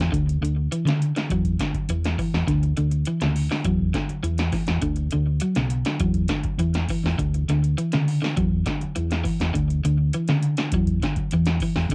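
A home cassette recording in a moderate booth ambience carries this driving, hypnotic afrobeat excerpt at 102 BPM in 4/4, with a dark, round hollow-body fingered bass colored by transformer saturation sitting up front beside an electro analog drum machine whose deep kick, punchy snare and metallic hats sound re-recorded in a small room, while a slightly broken-up electric guitar picks arpeggios through analog delay over Esus2 and Dmaj7(no3) harmonies that alternate with chordless passages.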